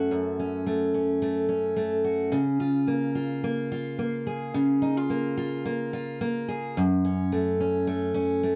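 A dark, warm studio sound with moderate reverb frames this easy-going, sunny pop excerpt in Db major at 108 BPM in straight 4/4, where a solo picked steel-string acoustic guitar with an auditorium-style body sits up front, moving from Gbm to Db6 and back to Gbm at 6.8 seconds within its 8.6-second span.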